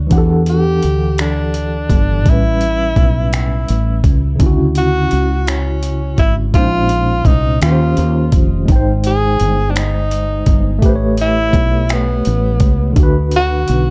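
A worn, slightly out-of-tune electric piano with medium tremolo, played through a combo amp, opens this slow, late-night six-eight R&B passage alongside a round, woody fretless bass. A gritty, overdriven sampler-style kit of finger snaps, hi-hat and a thumpy kick joins up front, while a breathy tenor saxophone enters at 0.5 seconds with a jazz-style solo full of subtone, vibrato and scooped notes. The dry mix carries a yearning mood over lush extended chords, moving from Em11 through A#m11 and D#13 to rest on D6.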